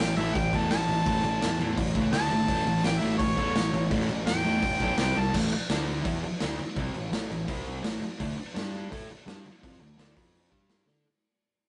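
Garage rock with a rowdy, swaggering attitude, this short piece cut from a longer song rides a straight beat at 168 BPM. A bright, overdriven harmonica takes a solo from the start, its pop-style melody coloured by light vibrato and scooped notes until it stops at 5.3 seconds. Beneath it, a double-tracked fuzz guitar sits up front, picking a compressed, distorted riff through power chords built around A5, D5 and G5, with F5 appearing late. A fuzz-toned fingered bass, direct and amped, adds a punchy, overdriven low end, while a raw drum kit of kick, medium-tuned snare and crash pumps in a bright stone room with a gritty, saturated, rolled-off sound. The whole take has a rough rehearsal-room feel with light reverb, and it fades out over its second half, ending on a drum fill at 10.9 seconds.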